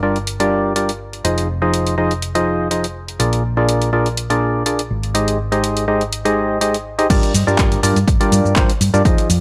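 A swung 4/4 groove at 123 BPM drives this bittersweet, energetic piano house excerpt, where an up-front, hollow organ stab riff with chorus, tape echo and sidechain pumping rides over a dark, round hollow-body bass and a tape-warm analog drum machine of crash, handclaps, hi-hat and shaker through Gm7, Fm7, Bb7 and Abmaj7, until a punchy electronic kick lands with the drop at 7.1 seconds in a dry, gritty mix with light reverb.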